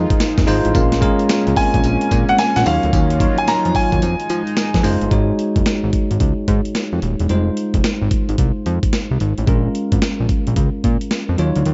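This slick, bouncy new jack swing excerpt rides a 110 BPM groove in 4/4 with a swung sixteenth-note feel, set in Bb minor. A compressed, gritty breakbeat sampler-style kit sits up front with a thumpy kick, medium-tuned snare, hi-hat and tambourine, joined by a fat analog bass whose detuned sawtooth and square tones are saturated and shaped with a quick filter pluck. A bell-like tine electric piano provides clean, direct accompaniment throughout, while a shimmering, retro pulse-width pad with chorus holds sustained chords in the background until it stops at 5.1 s. Between 1.6 and 4.8 s a clear, intimate grand piano carries a short melody, with audible action noise, long sustain and tape echo. The harmony moves through Fm7, Bbm7 and Ebm9 before shifting to Ab7sus4 in the second section, all wrapped in light reverb and a dark production that rolls off the top end.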